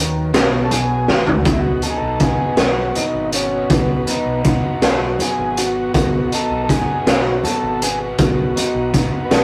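A crunchy, double-tracked overdriven guitar riff opens this hazy, hypnotic psychedelic rock piece in B major at 54 BPM in 6/8, over a growling, round overdriven bass and a very quiet, full tonewheel organ holding sustained chords through a fast rotary speaker with audible key click, all sitting on a G#m7 chord. At 0.3 seconds a mellow vintage combo organ takes the melody with light vibrato, as a gritty, punchy garage drum kit sits up front with a rolled-off top, and from 0.5 seconds soft-handed congas add a very quiet thick-skinned patter. A drum fill at 1.1 seconds leads into the main section, and the rough rehearsal-room sound carries tube saturation and a moderate stone-room reverb.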